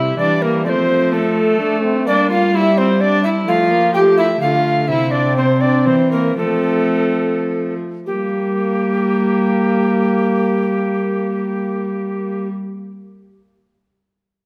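Rustic and solemn, this excerpt of a renaissance-style consort dance in triple time is cut from a longer piece. An airy alto recorder carries the melody up front, with a soft, chiffy attack and vibrato. A rich viola plays a second line from a more distant spot, while a dark, smooth-topped cello anchors the bass close at hand; both bowed strings have a period-style gut-string tone with a reedy edge. A bright, punchy trombone fills in the accompaniment with a light vibrato, and all four parts play together throughout. The pace slows between 4.2 and 8.1 seconds, leading into a new section at 8.1 seconds. A wet recital hall reverb gives the consort a spacious, resonant setting.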